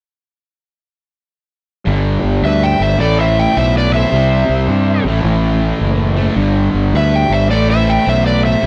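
A dry, close 1970s-style studio sound frames this smoky, heavy swung rock excerpt, where a bright, double-tracked distorted guitar riff and a round, punchy fuzz bass enter up front at 1.9 seconds over chords moving between G5, A5 and C, joined at 2.5 seconds by a high overdriven slide guitar melody and a dark, picked lead guitar line tucked in the background.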